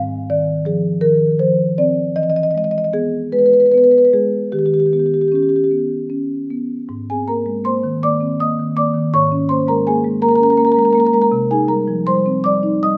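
Contemporary classical for solo marimba, this warm, playful fragment of a longer piece drifts in a rubato 6/8 at around 50-56 BPM in Ab lydian, its soft mallets drawing a woody, round, up-front tone from the bars across a range from Ab2 to Eb6, shifting through colorful harmonies such as Emaj7 and Ebaug7 before a new section opens at 6.9 s on Abadd9, all set in a moderate recital hall reverb.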